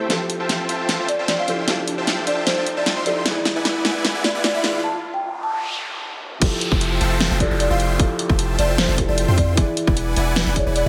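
A bright, euphoric future bass excerpt at 152 BPM in a half-time feel, where a muted, felt-softened upright piano with audible action noise and lush, detuned supersaw chords pump with sidechain and tape echo over Fmaj9 and E7, a woody, round marimba melody enters at 1.1 seconds, a big-room dance kit with a huge snare drives a build-up with a riser and noise sweep into a short break, and at 6.4 seconds the drop lands with a deep, mellow sine 808 bass and a hard-clipped, overdriven kick up front.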